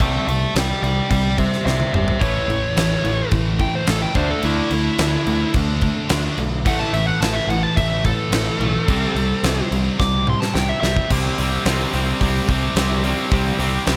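Light reverb sits over this hard rock passage, cut from a longer piece. The mood is anthemic and powerful, moving at 108 BPM in a straight 4/4. A dark, smooth overdriven lead guitar sits up front with slapback echo and takes a solo that runs until 11.1 seconds. Alongside it, a huge arena drum kit sits up front with bright cymbals, a fat snare, punchy kick and hall ambience. A growling picked electric bass, overdriven, direct and amped, holds the low end. Two overdriven semi-hollow guitars play riffs, one very quiet and the other bright in the background, and a double-tracked heavy high-gain guitar joins them at 2.2 seconds. A soft, flute-like tonewheel organ with key click and a slow rotary speaker sustains chords very quietly underneath, and a drum fill at 10.0 seconds leads into the closing stretch.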